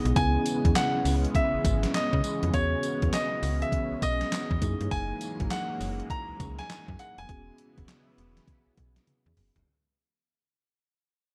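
A polished, up-front baby grand piano carries the melody from the start over a mellow tine electric piano and a lush, detuned unison pad treated with chorus and phaser, and at 0.1 seconds a snappy, metallic FM bass and a thumpy, sampler-style 80s drum machine enter, with gated reverb on its snare, handclaps, hi-hat, kick, tambourine and toms, in this punchy, slick new jack swing R&B cut at 101 BPM with a swung 16th-note feel and light reverb, moving through C#m7, E6 and F#13 as it fades out and closes on a drum fill at 9.1 seconds.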